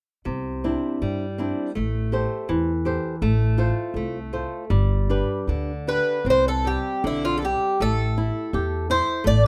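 A fado-style ballad in C major, this tender, nostalgic passage moves at a rubato pace of about 76-84 BPM in 2/4, tuned slightly low to A4 = 438 Hz. From 0.3 seconds, a fingerpicked flamenco guitar sits up front with a warm acoustic tone, supplying accompaniment over chords that move from Cadd9 through Am7, F/A and G, then on to Csus2 and A5. Alongside it, an upright bass plays pizzicato on steel strings, its woody sound close and present in the low register. At 5.9 seconds a fingerpicked twelve-string acoustic guitar takes the melody, its boxy, shimmering, octave-doubled tone carrying a swing, with audible finger squeak adding intimacy. A light reverb surrounds the trio, and the passage, cut from a longer piece, ends at 9.5 seconds.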